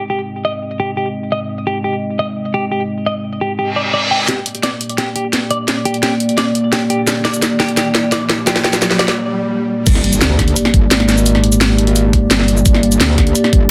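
A metallic, wobbling FM bass with distortion and chorus slams in at the drop at 9.9 seconds, joined by a knocking electronic kick, capping this tense, futuristic dark technical drum and bass cut at 172 BPM in G phrygian, where a deep, moody analog pad with subtle chorus and sidechain pumping sustains chords from Ab to Gm, a clean picked electric guitar plays filtered, tape-echoed arpeggios until 9.1 seconds, reverse cymbal, riser, swell and impact effects mark the build-up and break, and a layered drum kit with a cracking, soft-clipped snare and bright hats enters at 4.3 seconds, all under light reverb in a dense, heavily limited modern master.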